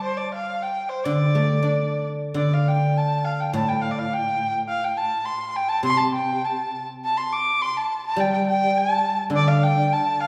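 Set in a wet recital hall and heard from further back in the room, this wistful, tender excerpt of Chinese traditional music in 2/4 moves with a straight feel and changes section at 2.4 seconds. A single bowed erhu carries the melody with a rich, nasal, earthy tone, light vibrato and portamento. A guzheng played with fingerpicks accompanies beneath it with a silvery, ringing sound.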